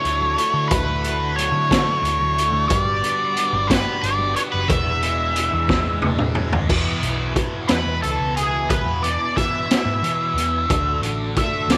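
Kaleidoscopic and hazy, this psychedelic rock excerpt moves at a slow 60 BPM in 6/8 in E mixolydian, led by a dark octave-fuzz lead guitar up front through wah, distortion and tape echo. Beneath it sit a bright, double-tracked fuzz guitar riff with phaser, a round hollow-body picked bass, and a mellow tonewheel organ holding sustained chords in the background with slow rotary speaker, chorus vibrato and key click. A raw garage drum kit sounds gritty and saturated with a boomy kick and rolled-off top, and very quiet, low-tuned congas played with soft hands last until 6.3 s. A drum fill at 5.7 s leads into a lead guitar solo from 6.7 s as the chords shift from Dadd9 through Gmaj7 and E7 to E and D.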